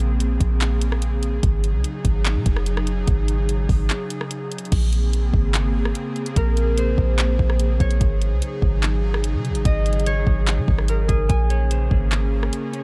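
A half-time groove at 146 BPM in 4/4 anchors this hazy, ethereal stretch of atmospheric cloud-rap in Bb minor, tuned to A4 = 435 Hz. Up front, a produced R&B kit of soft kick, tape-warm hi-hat, handclaps, rim click and crash sits beside a deep, round 808-style bass whose sine tone has a fast attack and then decays. Behind them, an airy, breathy pad with a vintage warble and detuned chorus holds slow-attack chords that shift between Bbm9 and Ab7sus4, with a brief break at 3.9 seconds. A fingerpicked concert harp enters at 6.4 seconds, its ringing acoustic melody carried on digital delay. A clean, dark electric guitar adds delayed arpeggios from 11.3 seconds, and a digital ambience surrounds the piece as it cuts off.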